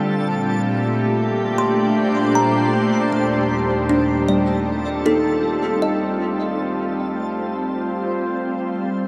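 Ambient music, melancholic yet serene, drifts in an unhurried straight four in this short cut from a longer piece. A soft, pure organ-like pad sits up front, holding sustained chords that move from Bb to Eb to Cm, its slow attack and long release thickened by ensemble chorus and shimmer reverb. Beneath it, a tense, string-like bowed drone with detuned unison and vibrato stays in the background, alongside a dreamy reversed texture that swells with a granular grain. A woody kalimba enters at 1.6 s with short thumb-plucked arpeggios, trailing into diffuse ambient delay and shimmer reverb before it stops at 7.5 s. The production is dark and warm, bathed in a huge, wet reverb with a decay of 9.2 seconds.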